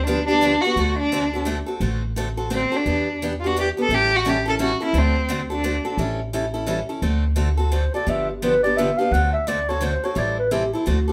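A swung 3/4 lilt at 172 BPM drives this charming, lively excerpt of acoustic string swing in D mixolydian, where a woody, thumpy pizzicato upright bass and a bright, boxy picked steel-string parlour guitar carry the accompaniment under an expressive bowed violin melody with vibrato and portamento until 6.0 seconds, before a breathy, intimate clarinet with subtone and scooped notes enters at 7.7 seconds for a close-miked jazz solo, all set in a wet studio reverb.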